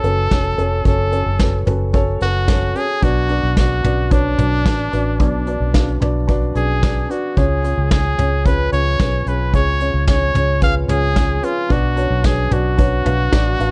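From the first beat, a clear, up-front trumpet with vibrato carries the melody over a soft felt-muted upright piano, a round, foam-muted fingered electric bass and a small-room brush drum kit with a punchy kick, in an earnest, driving piano-driven pop excerpt at 111 BPM in 4/4 that moves through F#m, Bm and C# with a dark, dry production tuned to A4 = 439 Hz.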